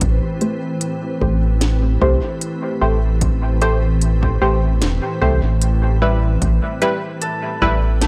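A round, dark analog bass sits up front from the start at 75 BPM in A minor, alongside a calm, organ-like pad with ensemble chorus, a very quiet punchy kick, woody snare and smooth hats with overdrive and dub echo, and muted, filtered dub chord stabs from 0.4 s, all moving from Am7 to Em in this meditative ambient dub excerpt before a bright, ringing concert harp adds arpeggios at 7.2 s.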